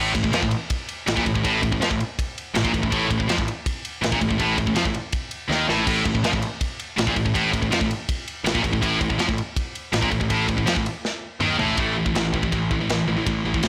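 A relentless, heavy metal excerpt opens with three distorted electric guitars churning out riffs over an Fadd11/A chord: a double-tracked overdriven guitar and two bright high-gain guitars sitting in the background, joined by a growly fuzz-picked electric bass. An up-front metal drum kit with a tight kick, medium-tuned snare, crash, ride and toms drives the straight 162 BPM pulse, with drum fills at 5.5 and 11.0 seconds. At 11.8 seconds the overdriven guitar drops out as the rest shift to an A5 chord, all in a blown-out, overdriven recording with light small-room ambience.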